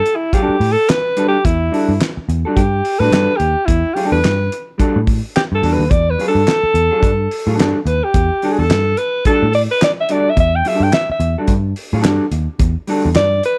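Lightly reverberant and close, this funky, driving snippet of a longer piece opens on a breathy, subtone alto saxophone solo with scooped notes and a vintage jazz flavor that sits up front from 0.0 seconds. A cloth-damped, thuddy drum kit with a fat snare, tight kick, hi-hat and handclaps carries a swung sixteenth-note groove, while a dark, foam-muted picked bass, round and punchy, joins at 0.5 seconds. A mellow, clean, fingered electric guitar rests over a single Em11 chord.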